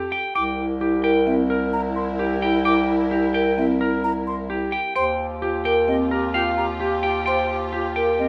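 Meditative yet urgent, this short cut from a longer classical piece in a minimalist pattern style moves at 130 BPM in an asymmetric 5/4 with a straight feel. A bright, clean electric guitar carries the melody up front, picked between G4 and G5, while a hollow alto flute with a crisp attack and straight tone traces a second line from the background. Marimba played with soft mallets enters at 0.1 seconds with round, woody arpeggios, and at 0.4 seconds a close-miked silver concert flute adds its own pure, tongued arpeggios with vibrato, high between Eb5 and D6. Beneath them, a dark symphonic string section holds lush bowed chords at a distance, and a clear, roomy bass clarinet anchors the low end between C2 and F2. The harmony moves from C7 to Ebadd9 at 5.0 seconds, and a large, wet studio reverb bathes the ensemble in space.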